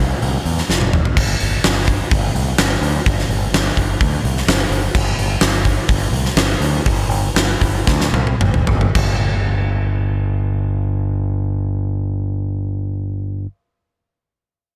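Driving straight 4/4 at 108-127 BPM, this heavy hard rock clip sets a huge arena drum kit with bright cymbals, a fat snare and a punchy kick, playing fills around 0.7 seconds and from 7.9 to 9.0 seconds as the pace slows, against an up-front, overdriven fingered electric bass with a bright, growling edge that carries on alone until 13.5 seconds, all in a light reverb.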